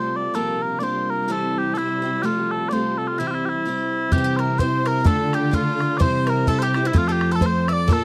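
Mellow, sweet small bagpipes carry the melody up front in this lively, rollicking Celtic polka in C mixolydian, moving at 127 BPM in 2/4 with a swung feel, over a bright, boxy picked steel-string guitar and a lush symphonic string drone that ends at 4.2 seconds. From 4.1 seconds a boomy bodhran, a woody cello bass with portamento, and second lines from a double-strung bowl-back mandolin and a clear fiddle in the background join in, with chords moving through Bb, C, F, and Dm. The sound is dry and close, like a 1970s studio recording, and this is a cut from a longer piece.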